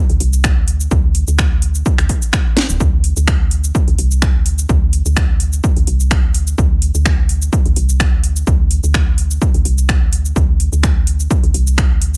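A woody FM bass and a house drum kit start together at 0.1 seconds in this minimal techno piece, joined almost at once by an electronic kick drum at 0.4 seconds. The groove sits at 127 BPM in 4/4 with a light 54% swing on the sixteenths, tuned slightly flat to A4 = 438 Hz, and the mood is quirky and hypnotic. The bass is soft, round and dark, moving between D1 and D2 with a fast attack and a decaying tail, and it sits up front with a sidechain pumping feel. The kit layers cabasa, finger snaps, metallic hi-hats and a cracking snare, all overdriven and re-recorded in a large room, with a drum fill at 2.6 seconds. The punchy, overdriven kick is also up front, and the overall mix carries little reverb in this short cut from a longer piece.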